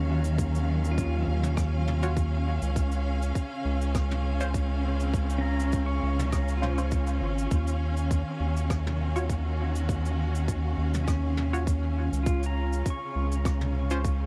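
This deep, spacious ambient dub excerpt opens at once on a bowed studio string section holding sustained chords with vibrato and portamento, a twangy pedal steel guitar picking bright, clean arpeggios through tape echo, and a round analog bass sitting dark and up front. Brushed jazz drums on cabasa, rim click and toms arrive at 0.2 seconds, softly placed and trailed by dub echo, and a tight, tape-toned electronic kick drum follows at 0.4 seconds. From 2.0 seconds a muted, filtered sawtooth chord stab with a short decay plucks in the background, thickened with chorus and dub echo. The groove moves at 101 BPM in 4/4 with a light 16th-note swing, in Eb minor, alternating between Ebm9 and Db. A small room ambience and vinyl crackle hang over the whole mix, lending it a dusty, intimate air.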